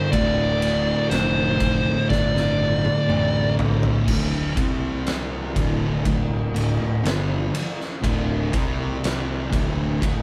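A slow, straight 4/4 pulse at 61 BPM drives this ominous, brooding stoner and doom metal fragment: an oversized low-tuned drum kit with a boomy kick, fat snare and dim cymbals rolls through a fill from 2.1 s to 4.1 s, a growly overdriven bass and an up-front thick fuzz guitar riff grind from Dm into alternating D5 and C5 chords, a second fuzz guitar sits in the background until the fill ends, and a compressed, distorted lead guitar carries a brief melody until 3.5 s, with the band playing live in one stone room.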